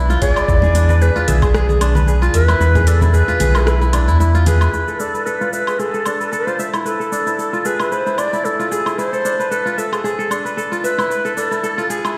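A lightly swung sixteenth-note groove at 113 BPM in 4/4 sets an earthy, mystical organic downtempo mood in this fragment of a longer piece. A layered, overdriven deep house drum kit with metallic hats, cabasa, rim click and woodblock sits low in the mix. A knocking electronic kick plays only until 1.5 seconds, while hard-handed congas play in the background. A deep, round analog bass with a dark, sustained sawtooth-and-sine tone pumps up front under an E7b9 chord until 4.7 seconds, when the harmony shifts to Dm. Crisp, ringing fingerpicked kora arpeggios run throughout, passing through a low-pass filter sweep from 4.7 seconds and shimmering in reverb. Above them, an airy low wooden flute in the Native American style sings the melody with vibrato, tongued chiff and lifted highs, trailed by tape echo and shimmer reverb, and the whole mix plays back on a big sound system in a bare room with a large studio reverb.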